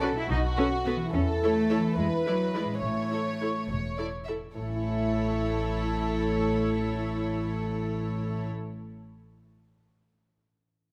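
Up-front, intimate second violins with light vibrato carry a line in this playful, mischievous film cue in 6/8, beneath a distant, floating violin melody, a rich viola section with vibrato, ringing thumb-plucked harp arpeggios, and pure, smooth-topped cello and double bass sections on the bass, the bowed strings all playing sul tasto with a soft attack, captured in a close, detailed studio with light reverb and cut from a longer piece.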